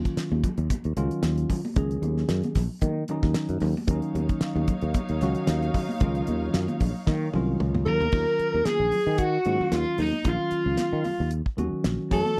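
A lightly swung 16th-note groove at 113 BPM in 4/4 drives this slick, intense electric jazz fusion excerpt in Eb minor, where a dry, close-sounding 70s drum kit with a fat snare and bright cymbals, a growly, punchy fretless bass and high-tuned congas tucked in the background support a clean tine electric piano, while smooth bowed chamber strings hold chords from 3.9 to 8.1 seconds and, during a drum fill, a breathy, mellow alto saxophone with slapback echo takes the melody at 7.9 seconds alongside a second line from a raw, overdriven garage guitar.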